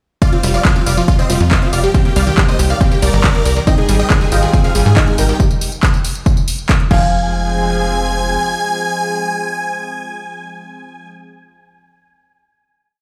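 A huge, detuned supersaw lead carries this euphoric, emotional uplifting trance piece at 139 BPM in F dorian, repeating a bright sixteenth-note riff over a pedal note in thirds and sixths, with sidechain pumping and dub echo. Beneath it, an overdriven, up-front four-on-the-floor kick and a metallic dance kit of claps, tambourine, open and closed hats and crash, both in studio reverb, drive the drop, while a tight, punchy sequencer bass plays off-beat notes with its own pumping. One lush unison pluck spins an eight-step arpeggiated sequence with filter sweep and dub echo, and a second, very quiet pluck doubles the lead's anthem line. From 3.7 seconds a thick pad adds sustained chords through chorus and phaser, joined by a soft, muted upright piano in the background repeating an intimate riff in octaves with digital delay. The harmony moves from Fsus2 through Cm7 and Abmaj7 to a break before landing on Fm. 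The drums stop at 7.0 seconds, leaving a final hit in which the lead, pad, piano and quiet pluck ring on to 11.1 seconds.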